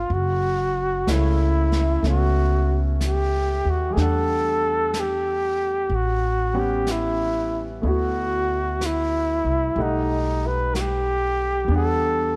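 Late-night and romantic, this swung jazz ballad fragment sets a breathy, whispered flugelhorn up front, carrying the solo melody with mellow vibrato, soft attacks and scooped notes. A clear concert grand piano with deep bass supplies the accompaniment, while a woody pizzicato upright bass sits close and present. A distant, roomy brush kit with a rolled-off top joins at 0.1 s, all under a light reverb.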